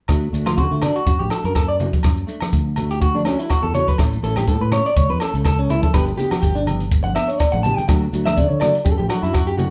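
A swung sixteenth-note groove at 123 BPM in 4/4 drives this joyful, danceable highlife guitar band excerpt in D major, where a tight, punchy cocktail drum kit of hi-hat, kick and rim click sits up front beside a slightly broken-up, compressed electric guitar picking arpeggios from 0.5 s, while a fingered electric bass and a fingerpicked classical nylon-string guitar hold down the D, A and G changes, a clean electric guitar solo runs throughout, and ringing agogo bells, grainy maracas and low-tuned, saturated soft-hand congas stay in the background of a live room with light reverb.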